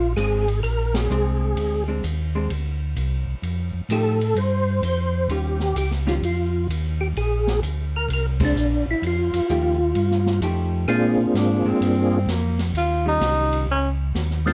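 A percussive tonewheel organ carries the melody with third-harmonic percussion, chorus vibrato and a slow rotary speaker, while a second, mellow tonewheel organ with key click holds down the bass, both up front in this soulful, swinging soul jazz organ trio fragment cut from a longer piece. A clean, picked and compressed hollow-body electric guitar accompanies them, and an open acoustic drum kit with dark cymbals, a high-tuned snare and a boomy kick plays hi-hat, ride, snare and kick, with the band hitting accents at 0.9 and 8.3 seconds over Bb9, F9 and Eb9 chords. At 11.4 seconds a breathy tenor saxophone with light vibrato steps forward for a short solo, set in light reverb.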